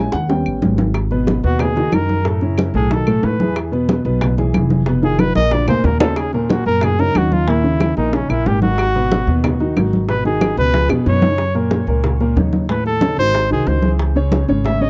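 A dry, close studio sound in the manner of the 1970s, with little reverb, frames this fiery, sultry stretch of Afro-Cuban jazz, cut from a longer piece and moving at 184 BPM in straight 4/4 in G# minor. Up front, a pizzicato upright bass with steel strings gives a growly, woody low end, while an intimate grand piano accompanies beside it, its action noise audible and its tone natural. Ringing, medium-tuned congas sit in a small room, tight, high-tuned bongos with a vintage, band-limited tone stay in the background, and close, dry claves play from 0.5 s to 11.1 s, with drum fills opening the passage and returning twice more. A warm trumpet takes a jazz solo from 1.5 s onward, up front with light vibrato, a smooth top and a touch of tape echo. The harmony moves through colourful chords such as G#m9, B6 and G#m69/E#, closing on a turn from G#7 to C#m.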